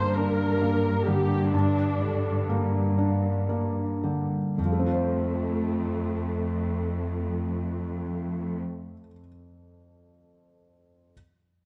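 Uplifting and hopeful, this excerpt from a cinematic, emotional film score in F major drifts in a rubato 6/8 at roughly 36-44 BPM, slowing over its first 4.6 seconds as the harmony moves from G minor to F major. A deep-bassed, vintage-toned concert grand piano carries the accompaniment until 11.1 s, joined by an expressive viola section with vibrato and portamento, a lush, focused cello section holding the bass, and a ringing, fingerpicked harp playing arpeggios in the background. The dark production sits in a recital hall with a wet 1.5-second reverb, and the strings drop out at 8.6 s, with the harp following at 9.3 s and the piano continuing alone until 11.1 s.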